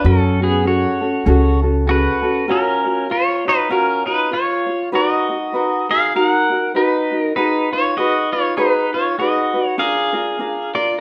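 A relaxed 4/4 swing at 99 BPM, with a gentle lilt on the eighth notes, carries this languid, sunny Hawaiian excerpt in F# major. An electric pedal steel guitar sits up front with the melody, its clean, compressed tone shaped by fingerpicks, slide and volume swells. Beneath it a light acoustic ukulele is fingerpicked in a mellow accompaniment. A woody, pizzicato upright bass with steel strings is also placed up front but drops out at 2.1 seconds. From 2.5 seconds the harmony moves through major- and minor-seventh chords toward a closing A#7, and the whole band sounds as if it is playing live together in one room, bathed in a wet studio reverb.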